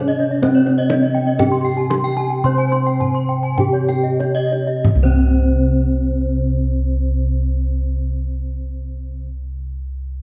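Bossed bronze gongs sit up front with a round, beating bass tone beneath a dark, smooth bronze metallophone melody, its paired tuning giving off shimmering beats in this brilliant Balinese gamelan fragment in C pelog, which moves at 46-66 BPM in a straight 4/4 and slows down over its first 4.8 seconds. A background metallophone accompaniment rings under two metallophone arpeggio lines: one mid-forward and struck with a wooden mallet, the other bright and airy under a horn mallet. A deep, vintage-sounding kendang played with hard hands enters at 0.4 seconds and stops at 5.5 seconds, all within a dark, warm production and a moderate concert-hall reverb.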